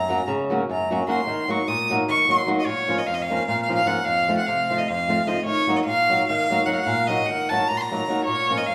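A bright, earthy bowed violin leads this bittersweet, restless piece of Balkan folk, its single player singing the melody between Db5 and Eb6 with a light vibrato. The opening 2.7 seconds feature a violin solo passage, after which a new section begins and runs to the close at 8.7 seconds. Underneath, a dark, fingerpicked acoustic flamenco guitar supplies the accompaniment from F2 to Gb4. The music moves at a brisk 300 BPM counted in eighths, in a straight 7/8, set in Eb Dorian with a raised fourth and tuned to A4 = 439 Hz. The harmony passes through Gb, Ebm, Bbm, F and back to Ebm, and a wet recital-hall reverb with a 1.7-second tail gives the cut-from-a-longer-piece fragment the air of a church or concert hall.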